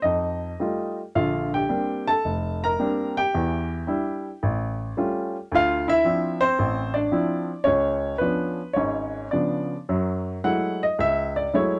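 A dry, close 1970s-style studio sound with light reverb frames this cool, smoky fragment of solo jazz, where a woody, up-front upright piano with short sustain plays alone at 110 BPM in 4/4 with a rubato swing feel, moving through rich chords such as F9, Bb69, Aaug7 and C#7b9 before shifting into a new section at 9.9 s that opens on F#m9 and is cut off at 11.8 s.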